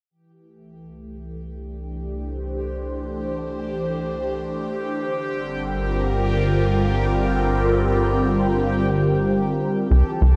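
In free time, this cut from a longer piece of mysterious, expansive ambient space music fades in on a swirling, detuned analog pad with phaser and chorus, holding sustained chords that move from C to G minor at 5.0 seconds, while a resonant, bubbling stepped-filter texture drifts above it. A mellow pulse-width drone settles in beneath from 1.0 seconds. At 9.9 seconds a tight, punchy sequencer bass riff with a fast filter pluck cuts through the dark plate reverb.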